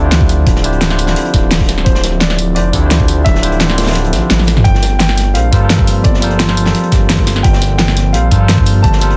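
Rolling liquid drum and bass at 172 BPM in straight 4/4, this lush excerpt in G dorian rides on a knocking, overdriven electronic kick layered with an up-front pop drum kit whose fat snare, hi-hat, tambourine and toms were re-recorded in a small room. Beneath them sits a crunchy breakbeat kit, dark and gritty with a rolled-off top, its hats, snare and room high-passed and tucked into the background. A smooth, detuned synth bass blending sawtooth and square waves carries the low end up front with a fast attack and a moving notch, while a bright, barky tine electric piano, lightly overdriven through a combo amp with tape echo, supplies the accompaniment. A glassy, ethereal FM pad holds sustained chords behind it with ensemble chorus, built-in reverb and sidechain pumping, moving from Dm11 to Gm11 at 4.7 seconds. A natural baby grand piano with short sustain and tape echo enters at 1.8 seconds to carry the melody, and the kick drops out between 4.0 and 4.7 seconds as a drum fill leads into the chord change, all within a dense, heavily limited modern master bathed in digital ambience.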